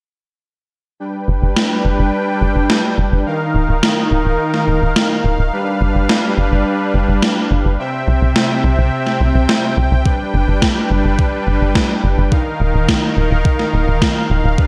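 Synthwave with a nostalgic, dreamy mood, cut from a longer piece and steeped in plate reverb. A smooth, detuned supersaw holds sustained chords moving through G, Ebsus2, G7 and C with sidechain pumping, while a tight, nasal sequencer bass with tube saturation and a filter sweep drives underneath. An overdriven electronic snare with gated reverb sits up front from 1.6 s, and a thumpy, overdriven electronic kick joins at 10.1 s.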